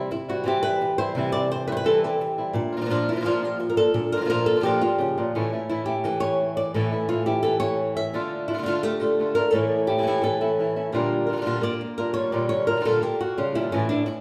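Flamenco at 172 BPM in 4/4, dramatic and fiery, cut from a longer piece and set in the wet reverb of a recital hall. Two up-front acoustic flamenco guitars play throughout, both fingerpicked: a warm one carries the melody from A2 to E5, while a bright one with fresh strings adds stabs beneath over chords moving from C through Bb and A to Dm. At 10.9 s the music shifts to a new section on Bb6, where the nylon-string guitar takes a solo until 14.2 s.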